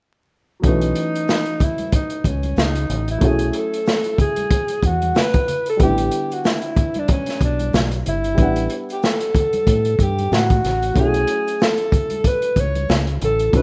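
Vinyl crackle and light reverb wrap this rough, home-demo-style jazz-hop cut, a short piece taken from a longer track. It moves at a relaxed 93 BPM in 4/4 with a gentle swing on the sixteenths, and the drums, bass and piano all come in at 0.6 seconds and play through to 13.6. The crunchy breakbeat kit sits up front, saturated and gritty with a rolled-off top, a tight kick, a medium-tuned snare and hi-hat. Beneath it, a deep, round fingered electric bass anchors the low end, while a dark, boxy grand piano with short sustain moves through suspended ninth chords, B9sus4 to A9sus4 and back. A breathy alto saxophone enters at 0.7 seconds to carry the mellow, jazz-style solo melody, its scooped notes and vibrato sounding roomy and distant, yet still up front in the mix. Very quiet maracas and congas, bright and close with hard hands, add a faint layer of percussion underneath.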